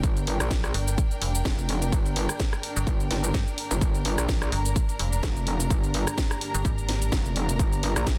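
Aggressive and bouncy, this short cut of bass house rides a swung 4/4 groove, with a punchy, tape-warm electronic kick up front and a house kit of hi-hat, rim click, shaker and cracking snare driving from the first second. A saturated, wobbling metallic bass with chorus and overdrive pumps against the kick throughout, joined at 0.7 s by a digital FM bass with overdrive whose tones decay, while a lush, woody string section with vibrato also pumps beneath. A deep, moody sawtooth pad with a slow attack enters very quietly at 0.9 s, all set on one G minor chord in a dense, heavily limited master with little reverb.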